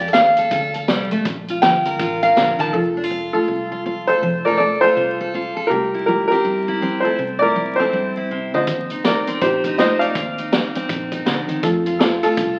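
A nasal, metallic lap resonator guitar opens this nostalgic, easygoing honky-tonk and classic country cut with a slide solo over a bright picked acoustic guitar, a dark, foam-muted electric bass sitting in the background, and a vintage drum kit with a high-tuned snare and punchy kick. At 2.7 seconds the resonator and drums drop out and a clear, woody, slightly detuned upright piano takes over the solo, with the drums returning at 8.7 seconds under an Eb6 chord. A large studio reverb and the crackle of a very old 78 rpm record wrap the swinging fragment in period character.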